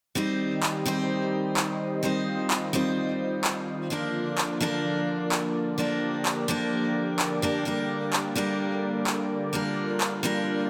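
A lush hall reverb gives this short passage of festival progressive house a spacious, polished sound. The passage opens at 0.2 seconds with an up-front picked steel-string acoustic guitar: bright and full-bodied, with fresh strings, the tone of a jumbo body and a little finger squeak, its accompaniment trailing a dub echo. Behind it, from the same moment, sits a thick, warbling unison pad, a vintage detuned sawtooth with a slow attack and long release, holding sustained chords through a chorus effect. Layered electronic handclaps enter at 0.6 seconds, re-recorded in a small room and placed up front. The harmony moves from C minor to B-flat at 3.9 seconds, giving the brief cut an anthemic, powerful mood.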